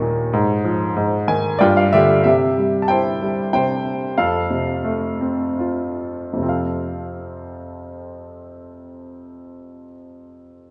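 Relaxed and warm, this brief classical fragment of a longer piece features a clear, present grand piano played solo and up front in a lyrical, rubato 3/4 in F major at roughly 70-98 BPM, with a short fill between 1.0 and 2.3 seconds, a gradual slowing from 2.3 to 6.4 seconds, and a lush concert-hall reverb lingering around every phrase.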